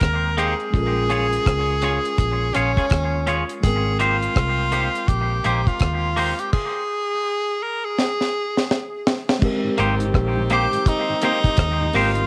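Romantic and tender, this short cut from a longer lovers rock reggae piece moves with a swung 4/4 feel, recorded at home on cassette with light reverb. An edgy tenor saxophone carries the melody up front with a light vibrato and tape echo, while a mellow tine electric piano sounding through its built-in speakers fills in the harmony beneath it. A dark, foam-muted fingered bass sits round and punchy alongside a dry, deep reggae kit with a high-tuned snare, tight kick, rim clicks, hi-hat and crash. A twangy, compressed electric guitar adds clean picked stabs bathed in spring reverb and analog delay. The band drops into a stop at 6.5 seconds, with a drum fill from 8.0 seconds, before a new section at 9.4 seconds brings in a bright saxophone section in the background and a very quiet tonewheel organ with a slow rotary shimmer.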